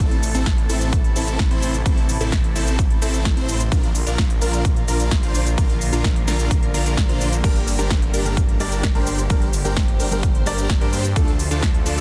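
Anthemic, euphoric festival progressive house at 129 BPM, this clip drives a punchy, up-front electronic kick and a big-room kit of crisp hats and snare under a huge detuned supersaw riff with digital delay, a thick, menacing saw bass and distant, reedy strings holding sustained chords, the riff, bass and strings pumping with sidechain through Am, Bb, Gm and Dm, before a worn baby grand piano with delay joins in the background at 7.4 seconds, inside a dense, heavily limited master.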